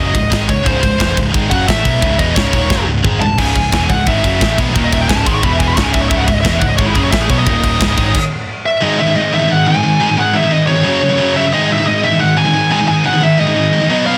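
Heavy and dark, this heavy metal excerpt opens with an up-front, high-gain lead guitar solo soaring over a bright heavy high-gain guitar riff, a sludgy distorted guitar and a growly, punchy overdriven bass in the background, all driven by a tight metal drum kit with bright cymbals in a big room. At 3.4 seconds a double-tracked, scooped guitar joins the riffing while a very quiet, distant string section adds lush, woody sustained chords. After a stop at 8.1 seconds, the drums, bass and strings drop out, and the three rhythm guitars carry the riff beneath the lead guitar under light reverb in a dense, heavily limited modern master.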